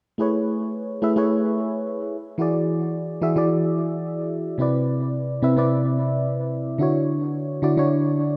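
Chillout in 4/4 at 109 BPM, this short cut from a longer piece carries a sunny, warm mood with a gentle 16th-note swing. A single mellow FM electric piano plays the accompaniment from 0.2 to 8.4 seconds, ranging from C3 to E5. Its tone is soft, round and full-bodied, with a dark, warbling chorus shimmer, a fast attack that decays gracefully, and a faint noise layer from vintage 12-bit sampler grit. Tape echo trails the notes, and the instrument sits up front within a moderate plate reverb that lingers for 2.8 seconds. The harmony glides through lush extended chords, moving from Amaj9 to E9, then Cmaj9 and Dmaj9, giving the passage a dreamy, relaxed glow.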